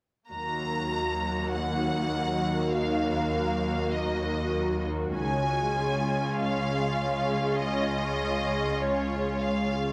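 Close, detailed microphones and a moderate scoring-stage reverb frame this brief, brooding cinematic cue in free time and Eb minor, where a lush, up-front violin section carries the vibrato-rich melody over smooth bowed violas, a low cello section holding the bass, and a mellow, detuned sawtooth pad with chorus sustaining soft-attack chords, giving a futuristic tint as the harmony moves from Eb minor to Db at 5.2 seconds.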